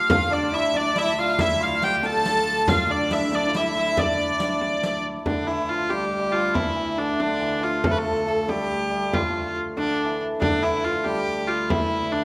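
A clear, biting hurdy-gurdy sits up front and carries the melody of this driving, ancient-sounding medieval dance in 6/8, its nasal, earthy tone topped with a smooth edge as the wheel-bowed, keyed line runs through the whole excerpt. Beneath it, a hammered dulcimer plays a shimmering second line that rings throughout, while a bright fiddle with light vibrato adds another second line from the background before dropping out at 5.0 s. A rich viola da gamba holds a low drone in the background, its soft attack and pure, floating sound giving the piece a steady foundation. The frame drum keeps time close and dry, joined at first by a riq with hard hands and band-limited, vintage jingles that also stops at 5.0 s. The players sit in a recital hall's reverberant space, and the passage moves into a new section at 5.3 s, cut from a longer performance.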